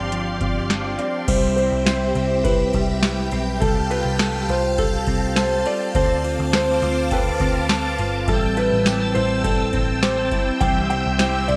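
A bright 1980s-style digital sheen and a roomy hall reverb surround this blissful, ethereal dream pop excerpt, where shimmering string-machine violins hold sustained chords over chorused, delayed arpeggios from a clean, compressed electric guitar. Beneath them sit a round, foam-muted picked bass and a booming drum machine with a deep kick, tonal snare, metallic hats, cymbals and tambourine under gated reverb. From 1.0 s a soft, felt-muted upright piano carries the melody through chorus and delay, joined at 1.3 s by a very quiet, bell-like celesta, and at 10.6 s a dark, mellow electric guitar with harmonic tremolo and lush chorus slips in behind the other parts.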